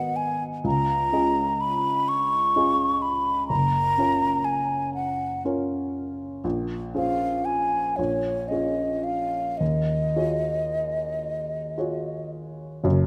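An airy, hollow concert flute with vibrato and soft attacks carries the melody up front over a worn, intimate baby grand piano with audible action noise in this hazy, wistful impressionist classical duo in Eb minor, which drifts in rubato 6/8 at 36-43 BPM in dotted quarters through chords such as Abm9, Gbmaj7 and Ebm11 in moderate concert hall reverb, an excerpt cut from a longer piece in which the flute stops at 12.3 seconds.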